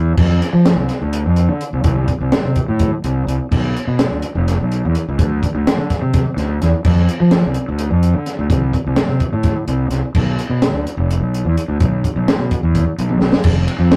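A fuzz-drenched fingered electric bass opens this short math rock and midwest emo excerpt, its overdriven, growly tone sitting up front as it ranges from F1 to F3 and runs the full 14 seconds. A compact cocktail drum kit joins at 0.2 s, acoustic and close, with a high-tuned snare, a punchy kick, toms, hi-hat, and ride and crash cymbals, all heard through a dark, rolled-off top end. The piece moves at 254 BPM counted in eighths, in a straight 7/8 that gives the music an intricate, bright character. Near the end, a drum fill between 13.1 and 13.4 s closes the single section before the cut. The rough rehearsal-room sound carries tube saturation and a moderate booth ambience, and the tuning sits slightly low, with A4 at 438 Hz.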